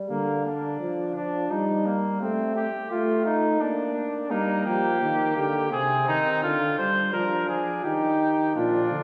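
A soft-attacked, mellow trombone opens this elegant, joyful classical canzona for brass in triple time, joined at once by a vintage-toned flugelhorn on the second line; a warm trumpet enters up front with the melody at 4.3 seconds, and a smooth-topped euphonium adds the bass at 8.6 seconds, each horn carrying a light vibrato within a wet scoring-stage reverb heard from further back in the room.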